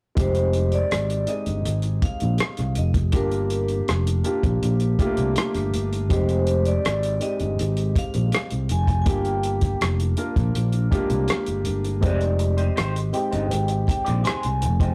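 A vibraphone struck with medium hard mallets carries the melody from the first moment, its metallic, ringing tone shaded by a slow motor vibrato, over a concert grand piano whose intimate sound carries audible action noise and a long sustain. This is lush 1970s-style soul at 81 BPM in a straight 4/4, cinematic and smooth in mood, moving between Fm9 and Gm7 in F dorian. Underneath, a fingered electric bass sits up front with a growly, punchy edge, while a cloth-damped drum kit adds a thuddy, dark feel with a tight kick, hi-hat and rim click. At 12.0 seconds an electric guitar through a small old amp joins with a slightly broken-up, lo-fi riff, coloured by wah and harmonic tremolo. The whole passage, cut from a longer piece, has the rough character of a rehearsal-room recording with warm saturation and moderate studio reverb.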